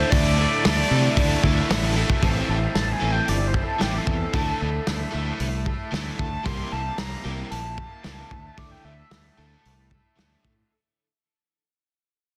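Indie rock at 113 BPM in a straight 4/4, cool and moody, this excerpt from a longer piece cycles through Dsus2, Am7 and C7 and begins fading out at 2.2 seconds. A screaming, guitar-like synth lead with distortion, phaser, vibrato and digital delay carries the melody from the very start, then launches into a solo at that point, falling silent at 9.4 seconds. Beneath it, a dark, compressed overdriven electric guitar with ensemble chorus and delay and a bright, raw garage guitar with overdrive both play picked riffs. A growling, punchy fingered bass and a loose, gritty acoustic drum kit with a medium-tuned snare and rolled-off top sit up front in a dense, heavily limited master with light reverb.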